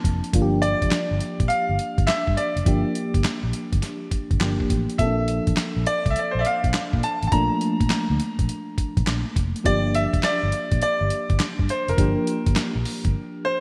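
New jack swing R&B with a bouncy, punchy, swung groove, this excerpt is built on a gritty, compressed sampler-style drum kit with thumpy kick, snare, handclaps and hi-hat, all treated with gated reverb, alongside a dark, foam-muted electric bass that sounds round and amped. A soft FM electric piano with chorus and tremolo carries the Gm7 and Bbmaj7 chords, while a brilliant concert grand piano enters at 0.6 seconds with an up-front melody trailed by digital delay. The bright 1980s-style digital production sits in a lush hall reverb, and the drums and bass drop out at 13.1 seconds, leaving the two pianos to close.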